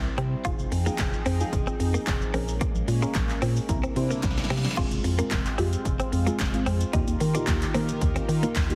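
A confident, driving dance-pop groove built on a punchy analog drum machine, its tape-warm kick and snare sitting up front with crash, hi-hat, shaker and handclaps, joined from 1.0 s by a very quiet, crisp group handclap. A hollow, organ-like FM bass and deep, soft chord stabs colored by chorus and phaser pump against the beat alongside a shimmering, retro pulse-width pad, while a clean, scooped direct-recorded electric guitar plays a picked riff. A downlifter and reverse cymbal from 4.0 s, joined by a drum fill at 4.2 s, lead into a new section at 4.8 s, all under light digital ambience and a heavily compressed, radio-style sound.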